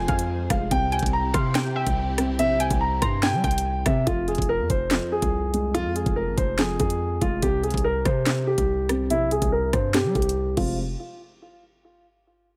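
This menacing, tense drill hip hop excerpt runs at 143 BPM in 4/4 with a half-time feel, set in F harmonic minor. A concert grand piano carries the melody up front with a natural, deep-bassed tone softened by a low-pass filter, while a felt-muted upright piano, dark and intimate with audible action noise, plays the accompaniment beneath it through its own low-pass filter. In the opening seconds, a lush, bowed string section holds sustained chords in the background, and a warbling, lo-fi sawtooth pluck with chorus and delay adds a faint second line until 3.6 seconds. A punchy, heavy 808-style bass with a sine body and fast, decaying attack anchors the low end, and the overdriven electronic drill kit hits hard with a knocking kick, sharp snare, bright hi-hats, rim clicks, handclaps and crash cymbal. A filter sweep begins at 4.1 seconds as the harmony moves between Fm and C, and the piece closes on a short passage after the chords stop, set in a small room with light reverb.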